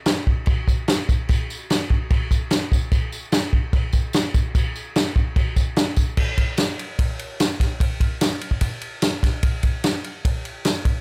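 A vintage acoustic drum kit sits up front in this swaggering, rowdy rock excerpt, its tight kick and medium-tuned snare joined by crash and ride cymbals in a straight 4/4 feel with a natural studio-room sound. A jingly tambourine plays in the background from 0.1 s, set in a small room, while the drums carry on until 10.9 s. The groove shifts into a new section at 6.2 s, and the mix stays dry with little reverb.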